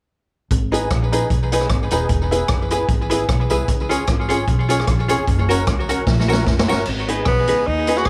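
A driving, mischievous ska groove in G# minor at 151 BPM with a swung feel opens at 0.5 s on woody pizzicato upright bass and a roomy, distant big-band drum kit with dark cymbals and a boomy kick, joined almost at once by clean, compressed hollow-body archtop guitar with tape echo, jangly, detuned honky-tonk piano stabs set back in the mix, and a jingly tambourine that also carries tape echo. The chords move through G# minor, E, C# and F# before a drum fill at 6.1 s brings the harmony back to G# minor, and at 7.3 s a clear, close-miked tenor saxophone steps forward with a vibrato-tinged melody. Light reverb and small-room ambience frame the whole performance.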